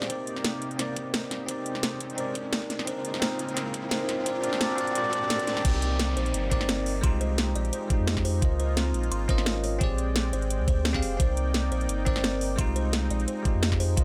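A light reverb wraps this lush, melancholic slice of liquid drum and bass, cut from a longer piece and moving at 173 BPM in 4/4 with a gentle swing on the 16ths, in C minor. A bell-like, clean tine electric piano sits up front with phaser and dub echo, while a smooth, detuned sawtooth pad holds sustained chords under chorus, tremolo and sidechain pumping, and a woody, buzzing kalimba plucks short arpeggios in the background through its own dub echo. The drums are tape-toned and re-recorded in a small room, with a knocking electronic kick and an up-front kit of cracking snare, metallic hi-hats and crash cymbal. The opening build-up rides on a background riser and downlifter that runs until 8.4 seconds, and the drop lands at 5.6 seconds, where a deep, round, warm sine sub bass enters up front. Rich extended chords such as Cm9, Abmaj9#11/C, Db69, Bb13 and Fm9 drift past in a melancholy cycle.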